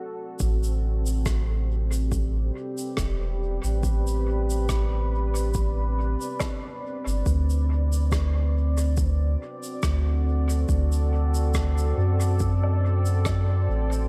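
A round, up-front dub sub bass anchors this spacious, meditative ambient dub fragment, moving from Am11 to D7 beneath a dark, detuned sawtooth pad with chorus and built-in reverb that sounds alone for the first 0.4 seconds, while an overdriven, layered electronic kick and a faint acoustic shaker, rim click and woodblock scattered through dub echo give a gently swung pulse to the echo-heavy small-room mix.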